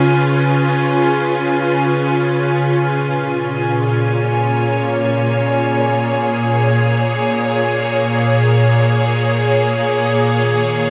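An evolving, detuned wavetable pad sits up front, its bright, morphing sustained chords drifting from C#7 to A#m7 and settling on D#7sus4 near 10.3 seconds, thickened by ensemble chorus. Behind it, a quieter glass-harmonics texture floats in a higher register, its glassy overtones calm and drifting through chorus. This melancholic yet serene ambient passage in free time, cut from a longer piece, is bathed in a huge, wet reverb that lingers for 8.4 seconds.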